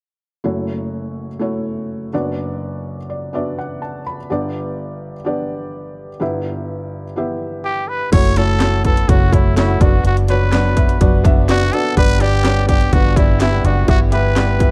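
Dramatic and earnest, this piano-driven pop excerpt in B minor at 125 BPM opens with a soft, mellow felt-muted upright piano, intimate and up front with audible action noise and a fill around 2.8 seconds, before a raspy, growling trumpet takes the melody with light vibrato at 7.6 seconds and, from 8.1 seconds, a punchy overdriven house drum kit with cracking snare and handclaps, a round, foam-muted vintage electric bass and a full-bodied fingerpicked steel-string acoustic guitar with finger squeak in the background fill out a dark, warm, dry production.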